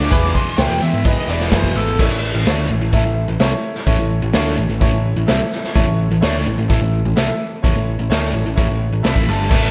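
A bluesy, distorted lead guitar solo opens this confident, driving classic rock excerpt at 128 BPM in A major, riding on a sludgy, double-tracked rhythm guitar riff, a round picked electric bass and a gritty, boomy garage drum kit with crash, hi-hat and snare, while a brilliant, woody upright piano adds accompaniment from 0.1 seconds. The solo gives way at 2.0 seconds as the harmony moves from E to A. A jingly tambourine sits in the background, appearing briefly in the opening and again from 5.8 seconds, and the lead guitar returns briefly near the close at 9.1 seconds. The drums pump with small-room grit and the rhythm guitar sits up front, all set in a lush hall reverb for a big arena sound.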